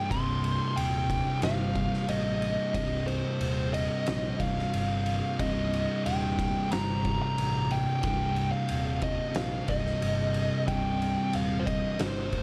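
A straight 4/4 pulse at 91 BPM drives this brooding, heavy stoner and doom metal excerpt in C minor, resting on a single C minor chord throughout its 12.4 seconds. An oversized, low-tuned acoustic drum kit with a boomy kick, fat snare and dark ride cymbal sits under a growly, round picked electric bass with overdrive, while two thick fuzz guitars grind out the low riff in the background. Up front, a dark, distorted fuzz lead guitar carries the melody through analog delay, all set in light reverb and small room ambience.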